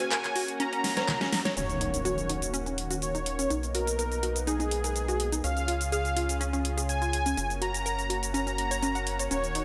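Progressive house with an emotional, expansive mood, where a smooth, evolving supersaw melody with vintage sampler grit and dub echo floats over a lush, airy unison pad, a detuned analog pluck arpeggio with cassette tape character and a filter sweep, and a big-room drum kit with a huge snare and metallic hats, as cowbell and congas with soft hands color the opening break before a drum fill and band accent lead into an impact and a round, deep analog bass at 1.6 seconds, all within a moderate hall reverb in this excerpt cut from a longer piece.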